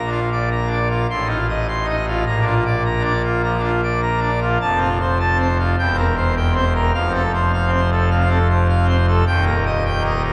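A pipe organ on full organ, with mixtures and a romantic voicing, sits up front and plays alone through this 10.3-second fragment of a longer classical organ toccata, spanning from a deep Eb1 to C6 at the top. The mood is majestic and brilliant, moving at 102 BPM in a straight 4/4 as the harmony passes from Bb through F7/A and back to Bb, then to F, C7/E and F again, arriving on Eb near 9.3 seconds. A wet church reverb with a 3.3-second decay surrounds the organ with a grand, resonant space.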